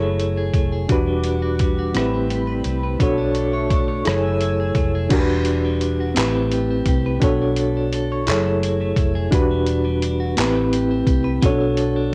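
A slow six-eight R&B groove at 57 BPM rolls on a gritty, compressed sampler-style soul kit with a thumpy kick, handclaps, rim clicks, hi-hat and crash, while a dark, round, foam-muted fingered bass with transformer saturation anchors the yearning, late-night mood through cycling minor ninth chords. A reedy electric piano with fast tremolo sits up front as accompaniment, a picked, compressed clean electric guitar adds a quieter second line, and a shimmering, retro chorused pulse-width pad holds soft sustained chords from 0.9 to 5.1 seconds. The cassette-tape colouring and light reverb give this fragment of a longer piece a homespun, dusty sound.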